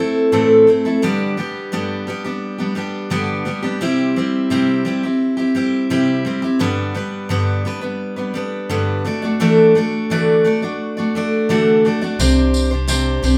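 A picked steel-string acoustic guitar opens alone with a full-bodied, up-front dreadnought sound, strolling through sunny, easy-going acoustic pop changes from Am to G, C and Dadd9 in a moderate studio room, until at 12.2 seconds a woody, thumpy pizzicato upright bass and a jingly, vintage-toned tambourine join on a Csus2 as this short cut from a longer piece ends.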